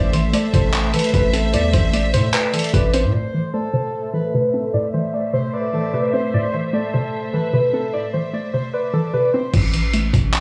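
A muffled, pitched-down sampler drum kit with a thumpy kick, crash, handclaps and hi-hat sits up front beside a heavy, punchy 808 bass in this eerie, brooding half-time hip hop and trap excerpt; both drop away around 3.0 seconds and return at 9.5 seconds. Dark, muted felt-like synth keys carry the melody through chorus and tape echo, joined by a breathy flute-like lead with vibrato, while a hollow, warbling square pluck bounces underneath and a warm, bowed string section holds soft sustained chords. A filter sweep runs through the middle stretch, and a light studio reverb frames the sound.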